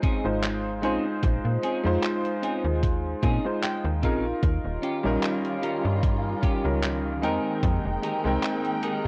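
A chorused electric grand piano sits up front with a clangy low end and long sustain, carrying hazy, woozy vaporwave chords of Bbm11, Eb9 and Fm11 in Bb dorian at a relaxed 75 BPM with a light 16th-note swing. A thumpy electronic kick, gritty sampler-style handclaps and hi-hat, and a snappy, metallic FM bass with tube saturation hold the groove. A clean, twangy picked electric guitar riff wrapped in chorus and tape echo adds a fill at 3.2 seconds, and a bowed string section with vibrato and portamento enters at 4.4 seconds, all washed in light digital ambience and the warbling pitch drift of worn cassette tape in this excerpt from a longer piece.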